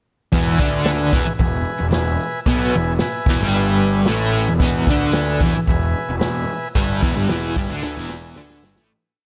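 Rowdy and swaggering, this short garage rock piece in E major stomps along at 112 BPM, built on a crunchy, double-tracked octave riff from an up-front overdriven guitar with tremolo, doubled by a growly, fuzzed-out picked bass driving steady eighth notes. A vintage drum kit with a punchy kick and a rolled-off top lays down a garage stomp groove, while a buzzy combo organ pulses triad chords in quarter notes higher up. Moderate spring reverb, small-room ambience and cassette tape grit color the sound, and the piece fades out from 6.8 seconds as a drum fill closes it at 8.9 seconds.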